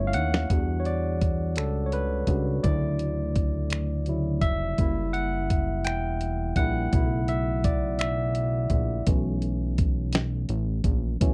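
A barky, bright tine electric piano runs through a combo amp and carries a solo from 0.5 seconds to the end of this slow six-eight R&B excerpt in E dorian at 56 BPM, moving over Em9, Dmaj9, F#7b9 and B9sus4 with a sultry, late-night mood. Beneath it, a fat, detuned analog bass with ring modulation and a filter sweep sits up front alongside a gritty, compressed sampler-style soul kit of finger snaps, hi-hat, thumpy kick and medium-tuned snare, which opens with a short fill. A very quiet, shimmering chorused pulse-width pad sounds only in the first 0.5 seconds, and the whole recording is dry and close in the manner of a 1970s studio.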